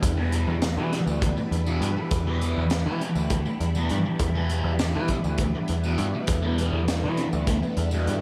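A dry, echo-heavy mix frames this mysterious, hypnotic psychedelic rock excerpt in 7/8 at 201 BPM in E minor, where a double-tracked fuzz guitar soaked in phaser and analog delay plays an up-front riff from 0.2 s over a round, overdriven picked electric bass, a gritty breakbeat drum kit with a high-tuned snare, tight kick and its own delay, a swirling, warbling string machine holding sustained Em7 chords through chorus and phaser, and a very quiet, jingly tambourine.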